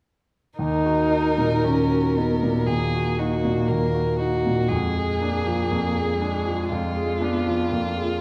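A rich, smooth violin with vibrato sings the melancholic, yearning melody up front in this slow, rubato romantic piano-trio movement at 59 BPM in 4/4 and Eb minor, tuned to A4 = 438 Hz, while a woody, more distant cello adds a bowed second line and a clear, polished grand piano accompanies from 0.6 to 8.2 seconds, the harmony moving from Eb minor to Bb7/F at 4.7 seconds within a wet recital-hall reverb in this passage cut from a longer piece.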